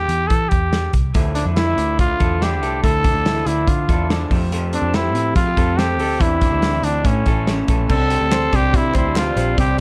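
A raspy, growling trumpet carries the melody up front, bathed in plate reverb and delay, in this wistful, bittersweet stretch of jangly indie pop at 143 BPM, with chords moving from C/E through Dmadd9, Fadd9 and Cadd9 toward Csus2. A round, foam-muted picked bass and a loose, small-room drum kit with a tight kick support it, while two lo-fi, slightly broken-up electric guitars through a small old amp sit in the background from about 1.1 seconds, one playing accompaniment and the other arpeggios. Crisp, dry group handclaps arrive at 8.3 seconds and a very quiet, swirling phased analog pad enters at 9.0 seconds, all within a dark, warm production.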